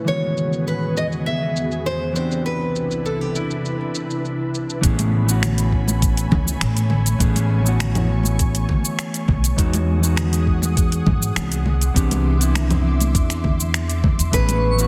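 Over a straight, relaxed groove of finger snaps, cabasa and filtered metallic hi-hats, this sunset chillout piece opens with a dark, clean electric guitar and an ethereal, warbling pad holding sustained jazzy chords, while a bright, fingerpicked nylon-string guitar carries the melody up front until 4.5 seconds. At 4.8 seconds a woody pizzicato upright bass and a knocking electronic kick join, and very quiet, hard-handed congas follow just after, adding vintage colour. The nylon guitar returns at 14.3 seconds, and a sparkling granular shimmer surfaces at 14.6 seconds, all set in light digital ambience with a dense, heavily limited finish.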